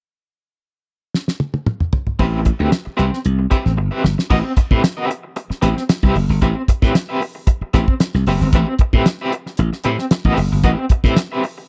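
A dry, close studio sound in the 1970s style frames this hypnotic funk excerpt in A dorian, moving at 114 BPM in a straight 4/4. A cloth-damped drum kit opens with a fill at 1.1 seconds, its thuddy, fat snare, tight kick and dark cymbals sitting up front with a gritty, rolled-off top, and it adds another fill just before the groove settles. At 2.2 seconds the slap bass and electric guitar come in together over an Am9 chord, the bass growly, punchy and bright in its low register. The picked guitar sits at the edge of break-up, twangy and slightly crunchy, its accompaniment shimmered by tremolo. The drums sit loudest in the balance, with the bass close behind and the guitar tucked a bit lower, keeping the whole thing funky and locked on a single chord as it is cut from a longer piece.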